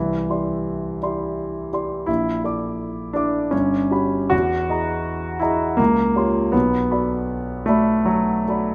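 In a rubato 3/4 drifting between 72 and 85 BPM, this short, mysterious and wistful fragment of impressionist classical music features a solo grand piano spanning G1 to D6. The harmony glides from Cadd9 through a chain of shimmering major-seventh chords with raised elevenths before settling on Bm7 near 6.5 seconds. The warm, intimate piano sits up front with a natural tone, long sustain and audible action noise, captured by close, detailed microphones in light reverb.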